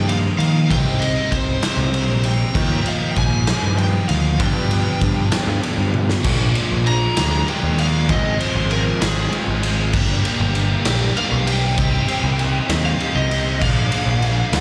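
This indie rock excerpt opens with the band already underway: a lead guitar through a small cranked amp carries a warm, overdriven melody over two background guitars, one crunchy with ensemble chorus and the other dark and compressed with phaser and slapback echo. A raw garage drum kit joins at 0.1 seconds, gritty and up front, with a punchy kick, a medium-tuned snare, crash, ride and toms ringing in a bright stone room. A growling, overdriven picked bass sits just as far forward, punchy and direct. Faintly beneath it all, a buzzy vintage combo organ holds clean sustained chords with heavy vibrato. The straight 6/8 feel stays cool and restless, and after a drum fill at 5.9 seconds the lead guitar takes a solo from 6.2 seconds to the end. The whole excerpt has the live sound of a gig heard through a club PA.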